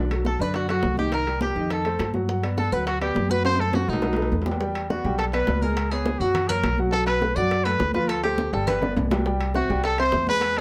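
Afro-Cuban jazz at a brisk 206 BPM, sophisticated and danceable, where an up-front trumpet with light vibrato carries the melody over an intimate grand piano with audible action noise and a woody, thumpy pizzicato upright bass, while a twangy fingerpicked bluegrass banjo adds a second line and ringing congas, metal-shell timbales and tight, very quiet bongos drive the club-reverb groove, with the tune settling into E minor at 4.6 s and drum fills at 3.4 s and 8.7 s in this cut from a longer piece.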